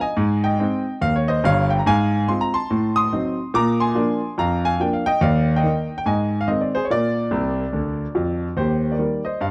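Stride jazz for solo concert grand piano, swinging and playful at 143 BPM in Eb major, with a clear, worn tone, deep bass and short sustain heard up front in a dry, close studio sound of small-room ambience. The piano moves through Ab, Adim7 and Bb7 before settling on Eb, with a fill from 7.3 to 8.6 seconds. This short piece is cut from a longer performance and ends at 9.5 seconds.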